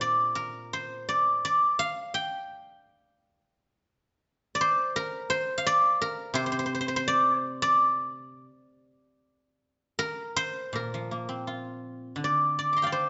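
Rubato in feel, this short fragment of Chinese traditional solo plucked-string music features a lone guzheng, played with fingerpicks and sitting up front, its silvery, ringing tone spanning a broad range and blooming in moderate recital-hall reverb, while a contemplative, longing mood settles in before a new section begins at 10.7 seconds.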